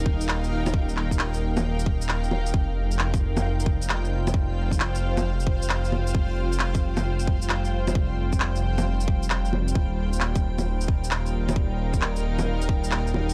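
A deep, rumbling detuned saw bass sits up front in this melancholic, ghostly future garage excerpt, pumping against a tight, tape-warm kick while electronic shaker, handclaps and bongos add a swung shuffle over a chord drift from Eb to Fsus2 and back to Eb at 9.8 seconds. Behind them a cloudy, blurred granular pad holds sustained chords with its own reverb and sidechain pumping. From 3.6 seconds a calm, glassy harmonics texture drifts in the background with chorus, all captured in a dry, gritty digital ambience.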